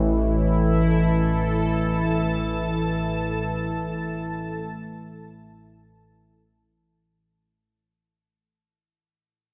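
A cavernous cathedral reverb, with a tail of 7.3 seconds, wraps this short cut from a longer dark ambient drone piece, which floats in free time with the tuning set to A4 = 439 Hz. Up front, a sweeping, resonant pad holds sustained chords between E3 and A5, its full-bodied sawtooth and sine layers, reinforced by a sub octave, opening through a slow filter swell beneath a chorus sheen. Under it, an analog drone hums between A1 and A2, its evolving sawtooth and pulse-wave tone shaped by pulse-width modulation, chorus and phaser. Barely audible gamelan-type bossed gongs trace round, bronze arpeggios until 2.6 seconds, while a faint bronze singing bowl, struck with a wooden striker, rings with slow, meditative beating. The harmony rests on an A5 chord, and the whole texture fades out from 0.9 seconds to the end of the clip, leaving a dark atmosphere.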